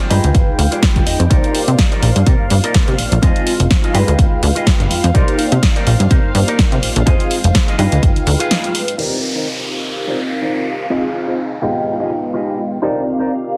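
Filtered disco house in C minor at 125 BPM with a light swing on the 16ths, funky and groovy, cut from a longer piece and heard through a heavily compressed, radio-like sound with light reverb and a sweeping filter. An up-front, layered electronic kick and a punchy analog drum machine with snare, hi-hat and crash drive a saturated, wave-folded plucky analog bass, while a barely audible tambourine sits underneath. A mellow, chorused polysynth comps through Cm9, Fm7 and G7b9b13, a dark envelope-filtered guitar plays a riff, and a lush vintage string machine sustains in the background. The kick and bass drop away just before a short break at 8.5 s, and the drum machine stops at about 9 s as an electronic downlifter enters. A clean electric guitar fill returns at 11.4 s.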